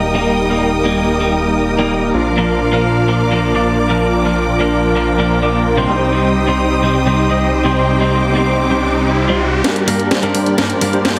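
Festival progressive house at 128 BPM, emotional and powerful, cut from a longer piece: huge, detuned supersaw chords with delay sit up front over rich, bowed symphonic strings with vibrato, a fat analog bass and a twangy clean electric guitar with delay, moving through Eb, Bb, Cm and Gm. A very quiet riser enters at 8.3 seconds, and at 9.6 seconds the bass stops as an overdriven house drum kit with a cracking snare and hi-hat arrives with a fill, while a filter sweep on the supersaws drives the build-up. The mix carries a hall reverb and a heavily compressed radio sound.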